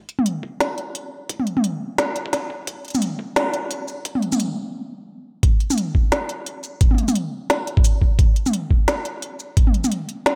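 A gritty, thumpy electronic kick sits up front in this cinematic, spacious drum and bass fragment: pitched down, compressed and tape-warm, it carries the grain of being re-recorded in a small room, with high-pass filtering shaping both the drum and its room sound. The track moves at 174 BPM in 4/4 with a half-time feel and a 58% swing on the sixteenths. An organic-sounding electronic kit enters first at 0.1 seconds, also up front, pairing a woody snare with smooth hi-hats, shaker and toms, all pushed through overdrive, before the kick arrives at 0.4 seconds. The opening is a build-up that halts in a brief stop, and the drop lands at 5.4 seconds, carrying the groove through to the end of this cut from a longer piece. A moderate plate reverb with a two-second tail drenches the mix, giving it a dreamy, floating depth.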